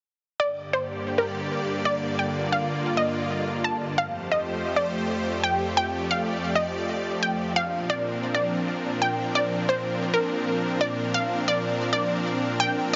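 Soaring and euphoric, this trance passage cut from a longer piece sets a punchy, detuned unison pluck melody with digital delay and a filter sweep over a lush, slow-attack supersaw pad holding sustained chords up front through Gm, Fadd9 and Bbadd9, with a huge ambient reverb around the pair and a heavily compressed, radio-like sound that dulls the top end.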